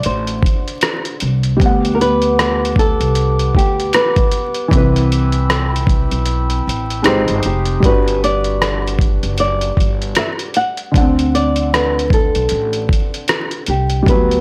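Lo-fi hip hop at 77 BPM in G major with a swung 16th-note feel, nostalgic and dreamy, where a dark, fingerpicked flamenco guitar carries the melody through a low-pass filter over a mellow felt-muted upright piano with audible action noise and cassette-tape softness. A woody, pizzicato upright bass with transformer saturation and a compressed, sampler-style drum kit with a thumpy kick, hi-hat and rim click sit up front, and the kick drops out from 6.3 to 7.8 seconds. An ethereal glass harmonica holds slow-attack chords from 1.6 to 7.8 seconds, and the dry, gritty recording is dusted with vinyl crackle in this cut from a longer piece.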